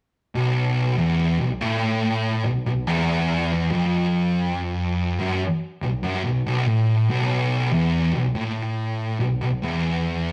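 Heavy and brooding, this metal excerpt at 71 BPM in 4/4 sets two thick fuzz electric guitars on a low riff from B1 to A2 over a B5 chord, one up-front, warm and picked from 0.3 s and the other darker with distortion from 0.4 s, all inside a wet stone-room reverb with a rough, saturated rehearsal-room sound.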